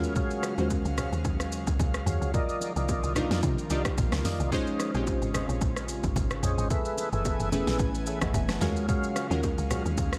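Amapiano at 110 BPM in 4/4 with a light swing on the sixteenths, this hypnotic, deep excerpt moves through lush minor eleventh chords, opening on Ebm11 and passing through Cm11, Bbm11 and Gbm11 before returning home. A woody, punchy log drum bass and an up-front deep house kit with a punchy kick, fat snare, dark hats and a tape-warm tone drive the groove, while very quiet acoustic congas and bongos sit close beneath. Glassy digital keys pluck mellow chords over an airy, breathy pad that pumps softly in the background, and a round, dark tonewheel organ adds stabs through a slow rotary speaker and tape echo until it stops at 9.8 seconds, all in a dry mix.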